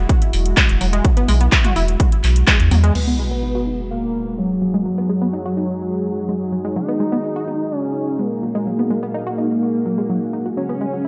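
A moody, hall-washed excerpt of melodic techno at 126 BPM in G# minor, hypnotic and dramatic, set in a moderate lush digital ambience. A deep, warbling, vintage-toned pad holds sustained chords throughout with chorus and its own reverb, pumping against the sidechain, while a round, nasal analog bass with tube saturation anchors the opening alongside a punchy, tape-warm electronic kick and a house kit of metallic hats, handclaps, toms and crash. From 0.6 s a tight, driving sequenced synth spins detuned sawtooth arpeggios with a filter pluck, chorus and dub echo. At 3.0 s the drums and bass fall away as the harmony moves from Eadd9 to G#m7, a sub drop lands as an impact, and a thick, bold unison lead enters with a mellow sub-octave weight, vibrato and tape echo. The pad, arpeggios and lead carry on together until the chords return to Eadd9 near the close.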